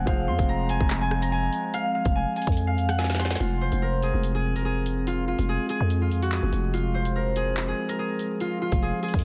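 Cold and tense, this drill excerpt moves at 144 BPM in a half-time feel in F phrygian, with a bright, fingerpicked concert harp carrying the melody up front through a low-pass filter and tape echo, while a dark, boxy grand piano sits in the background until 3.4 seconds. A warbling, lo-fi pad holds sustained chords with chorus and reverb beneath a growling, buzzy 808-style bass up front. The electronic drum kit enters at 0.1 seconds with a hard-clipped kick, woody snare, metallic hats, handclaps and rim clicks, and a drum fill from 3.0 to 3.4 seconds leads into the second section, all under light reverb and a dense, heavily limited master.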